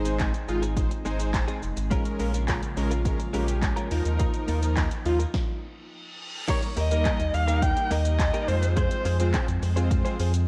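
A dark, woody erhu with vibrato and portamento enters up front at 6.5 seconds, carrying the melody through an analog delay in this energetic, driving dance-pop clip at 105 BPM, after a stop from 5.3 seconds into which an electronic reverse cymbal enters at 5.8 seconds, all over a punchy analog drum machine with kick, snare, claps, hi-hat, shaker and crash, a deep sine-and-triangle sub bass with octave, a fat, detuned sawtooth polysynth and a breathy background pad that both pump with the sidechain, and a clean, direct-recorded electric guitar riff with analog chorus, in a light reverb.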